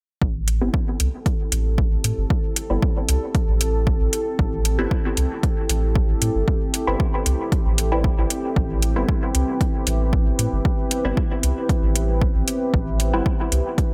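A straight 4/4 groove of punchy, overdriven kick and metallic, overdriven hi-hats sits up front in this deep, cavernous dub techno excerpt, joined by a round, soft sub bass, muted and detuned chord stabs that are filtered and treated with phaser and dub echo, and, from 1.0 s, a moody, full-bodied pad with chorus and reverb sustaining a single Am7, while the bass, stabs and pad all pump with sidechain compression inside a digital ambience.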